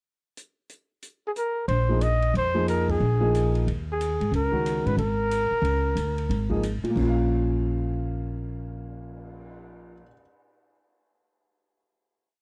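Modal jazz with an intense, spiritual mood, this short complete piece opens on a drum pickup of dark cymbals, boomy kick and ride pattern in a dry, close 1970s-style studio sound, before the woody pizzicato upright bass settles into a two-feel and the grand piano adds syncopated quartal comping with long sustain and audible action noise. Up front, a breathy, mellow trumpet with vibrato and scooped notes states a motif-based solo melody in period phrases, punctuated by a band accent at 2.8 seconds, until it stops at 6.6 seconds. The group then rests on a final minor chord from 7.0 seconds.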